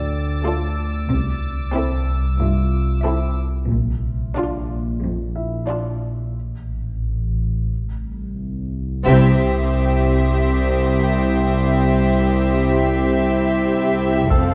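This tense, ominous suspense-film cue at 92 BPM opens on an up-front, evolving analog drone with chorus, over distant sul tasto cellos, a background grand piano with deep bass and a high, smooth-topped violin texture, soon joined by intimate chamber violins, floating violas and dark double basses that come and go over Dm, C6 and Bb harmonies. After a break from 6.3 s, the music turns at 9.1 s. Close, dry taiko strikes with hard sticks mark an accent, mellow, vintage-toned French horns sustain chords, and a rich, pure studio violin section carries a narrow melody, all set in a moderate scoring-stage reverb.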